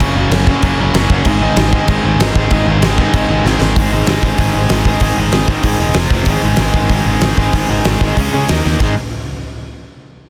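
Punk rock with a rebellious, rowdy charge, cut from a longer piece, where two bright, distorted electric guitars drive riffs (one up front, the other pushed into the background) over a punchy, direct picked bass and a big acoustic drum kit with a fat snare and tight kick set in a stone room, with drum fills at 3.4 and 8.6 seconds, all packed into a dense, heavily limited modern master with light reverb.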